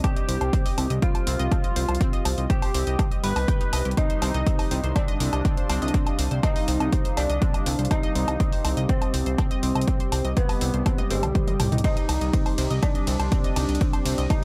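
A steady, straight pulse from an overdriven, up-front electronic kick and a tape-warm techno kit of hi-hats, ride, toms and woodblock, with a drum fill at 10.9 seconds, drives this hypnotic melodic techno excerpt, where a fat, saturated analog bass enters at 0.3 seconds under a thick, bold unison lead with vibrato and tape echo, bright chorused analog pluck arpeggios, an eerie inharmonic synth bell and a deep, moody pad sitting in the background, all pumping against the kick in a dry, close mix.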